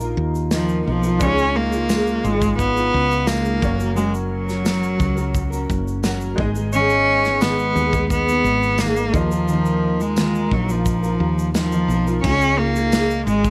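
Acoustic pop with a carefree, heartfelt mood, this short excerpt features an up-front bowed cello carrying the melody from 0.5 seconds with a rich, nasal vibrato over a double-tracked, fingerpicked jumbo steel-string guitar and a woody, round fretless electric bass. A polished, airy country drum kit with punchy kick, snare, shaker and crash keeps a straight 4/4 pulse, while a jingly tambourine sits in the background and a very quiet felt-muted upright piano, its action noise audible, drops out at 12.3 seconds. Everything is set in a small room sound.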